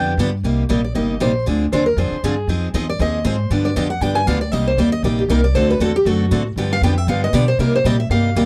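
A fast, swung 4/4 pulse drives this fiery, bittersweet fragment of acoustic string swing in the jazz manouche style, with a picked steel-string guitar comping through minor changes over a woody, thumpy upright bass played pizzicato on gut strings. From 0.7 s a second picked steel-string guitar takes the solo line higher up, its bright, boxy tone carrying audible finger squeak. The sound is dry, close and up front, like a 1970s studio recording with little reverb.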